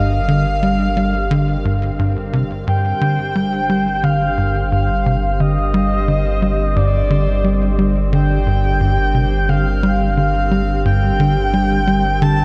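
A tight, punchy sequencer bass with vintage 12-bit sampler grit and tape echo drives this hypnotic, expansive piece of ambient space music at 88 BPM in G minor, holding on a Gm7 chord while a breathy, flute-like synth lead sings a soft melody through lush chorus and tape echo, a sweeping resonant pad sustains detuned chords, a round sub bass anchors the low end, and a bubbling stepped-filter texture sits in the background, all bathed in a huge ambient reverb.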